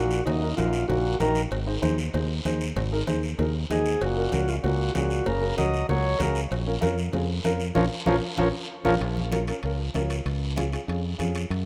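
This is a rough home demo mix with a moderate plate reverb, a driving, fiery cumbia cut from a longer piece, moving at 192 BPM in 4/4 with a straight feel in Bb minor. A vintage, reedy, overdriven combo organ carries the melody, while a bright trombone with light vibrato sits in the background on a second line; both play briefly at the start, then return at 3.7 s. A woody, boxy upright piano with short sustain keeps the accompaniment going nearly to the end, over an up-front, direct fingered electric bass. Raspy guiro, thick-skinned, low-tuned congas and ringing, close, dry cowbell and timbales drive the percussion, with the congas and metal shells tucked in the background. A band accent from 7.8 s, capped by a drum fill, closes the first section at 9.0 s before the chords move on to Db.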